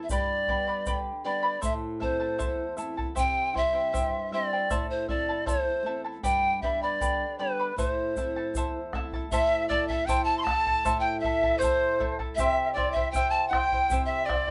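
Wistful yet festive, this Andean folk passage in a straight 2/4 sets an up-front wooden pan flute, airy with vibrato and a tongued chiff, over fingerpicked charango with shimmering double strings and a fresh-strung flamenco guitar. A deep, dark, saturated bombo and a grainy, close egg shaker keep the pulse as the chords circle through G, Am and C. At 9.3 seconds a bright, reedy cane quena enters with a second line, and the band plays live together in a small room with moderate reverb.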